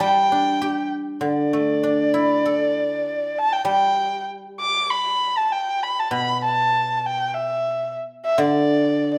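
A single bowed erhu carries the melody up front, its dark, woody tone shaped by vibrato and portamento as it moves between D5 and D6. This is a graceful, festive passage of Chinese traditional music in the G gong mode, taken from a longer piece, set in 2/4 around 98 BPM but played with a free, rubato feel. A guzheng, also up front and played with fingerpicks, supplies the accompaniment from B2 to A4 with a silvery, ringing acoustic sound. Both instruments play throughout the 9.2 seconds, with a brief opening passage giving way to a new section at 1.2 s. A recital hall reverb with a 1.2-second decay surrounds the pair in a generous, resonant space.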